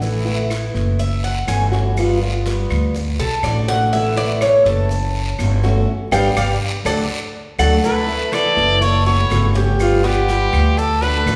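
Warm and danceable, this cut from a longer Cuban son and guajira piece moves at 123 BPM in a straight 4/4 in A major, cycling through Asus2, F#m7, G7 and D. An up-front upright bass gives a thumpy, woody pizzicato foundation on gut strings, while a bright, boxy plugged-in archtop guitar picks the accompaniment on fresh strings. A raspy, close guiro joins grainy, mellow maracas and claves, with the maracas and claves set in the background. The Cuban tres enters at 1.0 seconds with metallic, double-string arpeggios and leads the opening stretch, and the band adds an accent from 5.9 seconds. At 7.9 seconds a clear, punchy trumpet takes the melody with light vibrato in a forceful pop style, and a wet recital-hall reverb lends the recording a church-like spaciousness.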